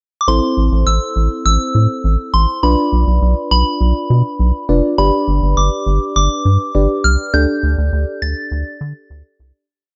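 A straight 4/4 pop groove at 102 BPM in A minor sets a cool, nocturnal mood, the rubbery square bass sitting up front with a hollow, bouncy, nasal bite beneath held triad chords on a mellow FM electric piano that sounds round and warbling through its chorus. Above them, a soft synth bell carries a pure, gentle motif-based melody high in its range, treated with chorus and phaser, as the chords move from Am through Bdim and G to a closing Dsus4. After a brief pickup, the whole short piece is a single verse under light reverb and a dark top end, fading out from 7.3 seconds to the finish at 9.7 seconds.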